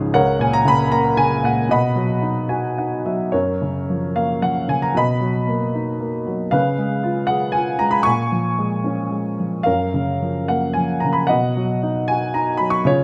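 Hopeful and sunny, this lyrical classical solo piano passage moves in a flowing triple metre with a freely breathing rubato feel. A single baby grand carries everything, its tone warm and a little worn, with a long sustain that lets notes ring into one another across a range from deep bass to bright upper register. After a brief opening phrase built around a G#m11/C# chord and a move to B, the piano plays a short fill at 2.2 seconds that leads into the main passage at 3.3 seconds. From there the harmony settles into a gentle cycle through F#maj7, Bmaj7, C#7 and A#m7 before returning to F#maj7 and B. Close, detailed microphones keep the instrument present and up front, with only a light reverb around it, and the passage is cut from a longer piece.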